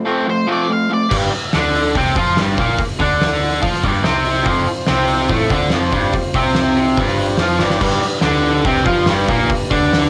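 On a home cassette recording, the room's ambience hangs around this raw, rowdy garage rock piece. It opens on a break: a double-tracked, overdriven rhythm guitar plays a bright riff up front, a mellow combo organ holds sustained chords in the background, and an octave-fuzz lead guitar adds a brief, fuzzy melody up high. At 1.1 seconds the bass and drums come in. The hollow-body bass is round and amped with overdrive, and the oversized, low-tuned kit sounds gritty and saturated in a stone room, with a fat snare, punchy kick, hi-hat and dark crash cymbals. The organ returns at 4.4 seconds with light vibrato as the chords move from G5 to F5, and a drum fill at 7.6 seconds leads into a repeat of the section over a G chord, all driven by a straight 4/4 pulse.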